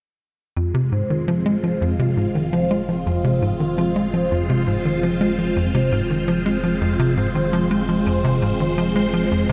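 A punchy sawtooth sequencer bass drives this mysterious, expansive passage of ambient space music, cut from a longer piece, its plucky filtered riff sitting up front in F minor at 84 BPM in a straight 4/4, with a fast attack, a moving notch and delay trailing each decaying note. Above it, a vintage string machine holds sustained Fm chords from 0.6 seconds, its bright tone swirling through ensemble chorus and phaser with a slow attack and long release. A soft-mallet vibraphone plays mellow, ringing arpeggios with a slow motor vibrato, airy and metallic, while a low-pass filter sweep and delay shape its sound. Underneath, a round sine sub bass fades in on a single deep F with warm tube saturation. Electronic hi-hats and claves, analog and re-recorded in a small room, fade in with delay in the background, and the whole mix is bathed in a vast, echoing cathedral reverb with a 6.6-second decay.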